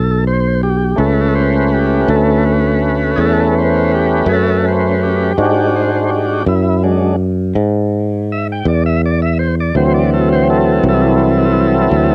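A lightly reverberant home cassette recording opens on this gritty, soulful slow blues, moving at 55 BPM in a straight 12/8 feel through A7, E7 and D7 chords. The tonewheel organ takes the solo throughout, its full, thick sustained chords lightly overdriven and colored by vibrato and a slow rotary speaker, with a cassette-tape haze. Beneath it, a sustaining fretless electric bass sits up front with a bright, direct, growly tone in this short section cut from a longer piece.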